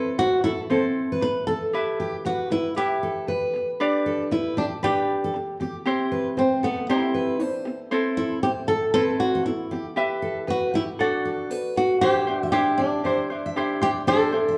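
A bright, light ukulele and a full-bodied jumbo steel-string guitar with fresh strings open this easy-going, heartfelt acoustic pop excerpt, the guitar spinning fingerpicked arpeggios, before an up-front flamenco guitar takes the melody at 0.2 seconds, its finger squeaks audible. At 117 BPM in 4/4 with a gentle sixteenth-note swing, the trio moves through Am, Em, G and C, then Em and D, shifting to a new section on Cadd9 at 12.0 seconds. Played live together in one large studio, the band sits in a lush wash of reverb.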